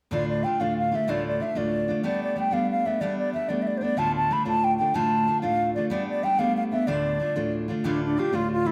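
A hollow wooden flute and a picked steel-string acoustic guitar enter together at 0.1 s in this spirited, driving Celtic folk passage in D dorian, moving at 124 BPM in a straight 6/8 feel. The airy flute carries the melody with gentle vibrato and a soft attack. The full-bodied dreadnought guitar supplies the accompaniment over Dm and Gadd9 chords, with an audible finger squeak. Both sit up front in a moderate recital-hall reverb, and the passage is cut from a longer piece.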